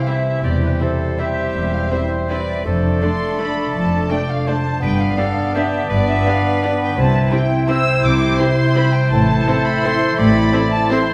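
In a triple metre with uneven, rubato beats, this elegant, festive classical passage is cut from a longer piece and sets a veiled, con sordino violin section on the melody, with a second, very quiet muted violin line beneath. A clear oboe, an airy flute ensemble and a distant clarinet weave second lines around it, while a soft-attack bassoon and a rich, muted viola section fill the accompaniment. A dark French horn section holds sustained chords, a ringing concert harp spreads arpeggios, a vintage-toned trumpet adds stabs, and close, muted cello and double bass sections enter at 0.4 s to anchor the bass, all bathed in a wet concert hall reverb.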